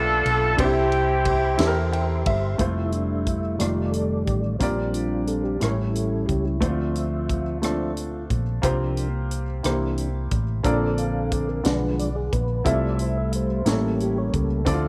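A slow gospel groove in 6/8 at 60 BPM, felt in dotted quarters with a straight feel, this short cut from a longer piece in F major sounds both reverent and jubilant. A vintage saxophone section with light vibrato carries the melody only for the first 1.9 seconds, its tape echo trailing behind, while the baby grand piano slips in a brief fill from 1.6 to 2.6 seconds, intimate and close with audible action noise and short sustain. From 2.6 seconds the tonewheel organ steps forward for a solo, its soft, flute-like tone shaped by second-harmonic percussion, chorus vibrato and a slow rotary speaker, moving through rich chords such as Fmaj7, F13, Bdim7 and a closing A7b9. Underneath, a hollow-body short-scale electric bass plays fingered lines that are dark, round and punchy, sitting up front. A tight funk drum kit enters at 0.3 seconds with hi-hat, kick, ride, rim clicks and a high-tuned snare, sounding natural in a small room, all wrapped in light reverb.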